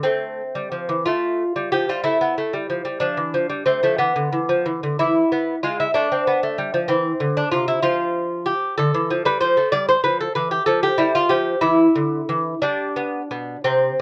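In a 6/8 at roughly 57-65 BPM counted in dotted quarters, with a rubato feel, this solemn, flowing baroque-style dance for solo lute unfolds in A minor, tuned to A4 = 438 Hz, across a short 14.0 s fragment of a longer piece. The fingerpicked lute sits up front, its delicate gut and double strings, some doubled at the octave, ranging from B2 to D5 as the harmony moves from Am through Dm and E back to Am, then on to Fmaj9, Dsus2 and G. Light reverb surrounds the instrument, and the sound carries the worn character of old cassette tape, with a warbly pitch drift.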